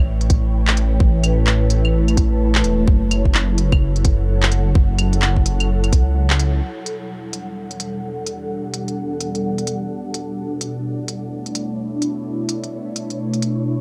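Swung sixteenths in four drive this nocturnal, ghostly future garage cut from a longer piece, with a tight, up-front electronic kick and a produced drum kit of claves, handclaps and smooth hi-hats ticking over a small room ambience. An ethereal, airy pad, full-bodied yet mellow with ensemble chorus, phaser and sidechain pumping, holds sustained chords from A9 to F#m7, while a deep, rumbling detuned saw bass beats and pumps beneath it. The kick falls away just before a band accent at 6.3 seconds, and the bass drops out shortly after, leaving the drums and the pad, now under a filter sweep, to drift through Em11 and Bm11 in a dark, lightly reverberant mix.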